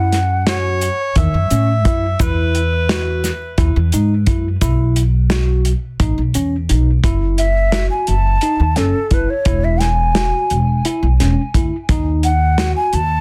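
A brief, airy flute phrase opens this tense, driving progressive instrumental in 7/8, over a worn, slightly out-of-tune tine electric piano playing arpeggios and a woody pizzicato upright bass up front, with a dark soul drum kit with a tight kick and a grainy tube shaker in the background. A breathy alto saxophone second line with tape echo sounds until 3.6 seconds. At 7.4 seconds the hollow, mellow flute returns up front for a vibrato-laced solo with crisp chiff and tape echo, in a dry, dense, heavily limited mix cut from a longer piece.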